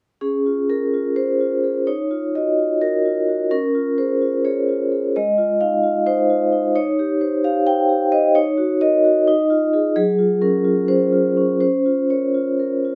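In a loose, rubato 7/8 with eighths at 258 BPM, this playful, warm contemporary classical excerpt features a solo vibraphone in Db major, struck with medium hard mallets and shimmering with a medium motor vibrato from 0.2 to 12.9 seconds. Its ringing, metallic tone sits up front with a vintage, band-limited character, caught by close, detailed microphones and set in light reverb. The harmony drifts through lush colours such as Dbmaj7, Ebm9, Gb/Eb and Gbmaj7 before settling on Db6.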